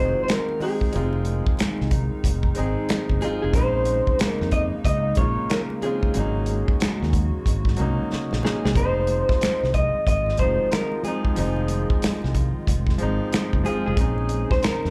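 A slightly broken-up electric guitar carries the melody over clear concert grand piano and a round, punchy fingered bass from the start, both guitar and piano touched with slapback echo, in this sultry, introspective neo-soul R&B excerpt at 92 BPM with a swung sixteenth-note feel. A hollow, flute-like pad with chorus sits softly in the background, while a dry, damped 70s drum kit of finger snaps, hi-hat, tight kick and snare sits up front, playing a fill from 8.1 to 8.8 seconds, and very quiet, bright congas enter at 0.5 seconds. The harmony moves through Fm7, Bbm11 and Ab7sus4, and the whole excerpt sounds like a live club gig heard through the venue's PA with light reverb.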